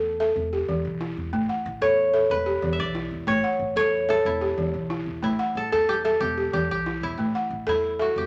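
A lilting 12/8 pulse at 123 BPM, counted in dotted quarters, drives this joyful, flowing piece of West African string and xylophone music, cut from a longer performance and alternating between E minor and A. A bright, ringing fingerpicked kora carries the melody up front, while a close-miked balafon, played with soft rubber mallets, spins full, buzzing, woody arpeggios. Beneath them sits a thumpy pizzicato upright bass, and a wet, large studio reverb gives the sound its space.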